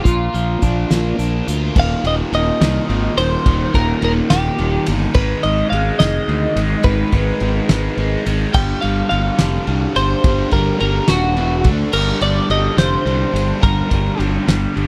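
Upbeat yet wistful, this indie rock passage moves in 6/8 at 71 BPM in Eb major, with a clean, compressed twelve-string electric guitar carrying the melody over a double-tracked, scooped overdriven guitar riff colored by phaser. A growly fuzz bass sits up front beneath a loose acoustic kit with a fat snare, punchy kick and dark cymbals in a pumping room, the whole band set in studio reverb. After a brief opening on Bb, the harmony moves at 1.8 seconds to Eb5 and travels through Abm, G5 and Gm, with the twelve-string stopping at 14.2 seconds.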